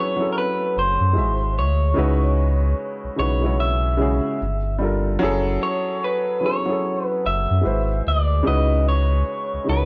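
A slightly broken-up electric guitar through a small old amp carries the melody from the start, its picked, lo-fi tone sitting up front over a woody, polished upright piano in this late-night, soulful neo-soul R&B excerpt with a gently swung sixteenth-note feel. At 0.8 seconds a deep, full sub bass with an octave layer joins, its sine-and-triangle sound sustained and immediate under chords such as F#m9, C#m11 and G#7alt. A light reverb and small-room ambience give the close, intimate mix some air.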